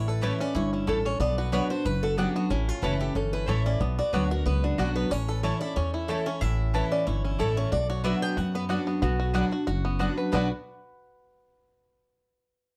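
Swung eighths at 184 BPM in 4/4 drive this haunting bluegrass excerpt in B minor, where a thumpy, woody gut-string upright bass sits up front beneath a bright, boxy picked archtop guitar carrying the melody, a picked auditorium steel-string acoustic guitar supplies accompaniment, a twangy, percussive banjo plays arpeggios, a mellow double-strung mandolin adds stabs, and from 9.0 s a metallic, nasal lap resonator guitar slides in a second line in the background, all set in a dark production with light reverb.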